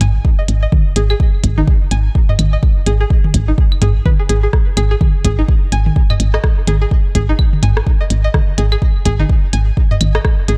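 Minimal techno with a cool, quirky mood, built on a woody, round FM bass sitting up front under a deep electronic kick that enters at 0.2 seconds, clicky hi-hats, a booming, tape-warm analog drum machine of claves, rim clicks and toms, and a twangy, string-like resonator pluck riff carrying chorus, gritty 12-bit sampler texture, a filter sweep and digital delay, with both pluck and bass pumping against the kick in a dark, dry production cut from a longer piece.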